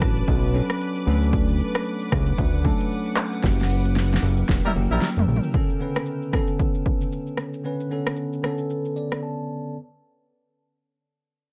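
Lightly reverberant and smooth, this mellow afrobeats excerpt at 114 BPM in B minor sets an up-front, bell-like tine electric piano with lush chorus over a cloudy granular pad and a fat, saturated analog bass that both fall away around 5.5 seconds, while an overdriven deep house kit with a punchy kick and handclaps drives a drum fill and band accent as a distant horn section briefly appears at 4.6 seconds, and the piano later takes a fill into a closing break.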